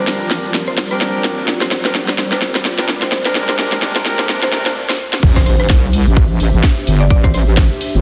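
Swaggering and bouncy, this bass house excerpt moves at 128 BPM in 4/4 with a swung sixteenth feel in A phrygian, building over a Gm chord before dropping onto Am at 5.2 seconds. The opening build-up layers a woody, round FM mallet pluck with chorus, tape colouring and dub echo in the background, a very quiet, moody ambient pad holding sustained chords, and an airy, breathy pad drifting underneath with its own chorus and sidechain pumping. Bright pop-style horn stabs with light vibrato cut through under a low-pass filter, pumping and echo, while an electronic riser climbs in the background and a garage drum kit with a cracking snare, hats, ride, shaker and crash runs fills up to a short break. At 5.2 seconds the drop lands with an impact, a tight, tape-tinged electronic kick and a heavy, saturated wobble bass that sits up front with overdrive, chorus and pumping. The dense, heavily limited master carries light reverb and a faint mains hum.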